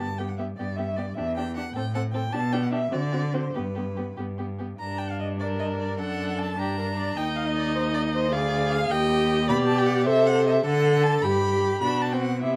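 Classical-period string quartet movement, lively and cheerful, in a quick 6/8 at 102 BPM with rubato, moving from G major to G minor at 4.8 seconds and back to G major at 9.5 seconds, where a warm, expressive first violin carries the melody with portamento above a focused second violin line, a smooth, even viola accompaniment and a rich cello bass set up front, all four bowed with vibrato in light reverb.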